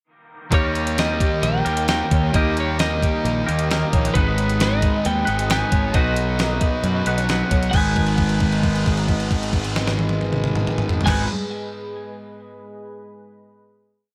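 Shoegaze and dream pop rock with a dreamy, hazy mood, where a thumpy, up-front 12-bit drum machine plays a pop groove while a round, punchy fuzz bass carries a dotted figure beneath ringing chords from a background fuzz guitar with analog chorus and a compressed twangy guitar with reverse reverb. Meanwhile a lo-fi small-amp guitar plays a bright chorused ostinato until 8.4 s, a lightly driven lead guitar with tape echo sings motif-based song phrases, and a deep, detuned sawtooth pad swells in at 2.3 s before everything settles onto a held final chord from 7.7 s.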